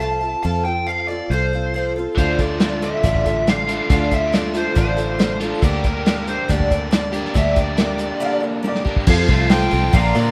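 A straight 4/4 folk rock and heartland rock groove carries this nostalgic, rough home-demo snippet, where a smooth overdriven lead guitar sings the melody through plate reverb and tape echo over a shimmering, octave-doubled twelve-string acoustic guitar and a round, foam-muted fingered electric bass, before a bright, double-tracked overdriven electric guitar riff and an up-front, muffled vintage drum kit with dark cymbals join at 2.2 s, a woody upright piano adds a brief second line at 8.2 s alongside a drum fill, and a reedy, very quiet accordion holds sustained chords from 9.1 s.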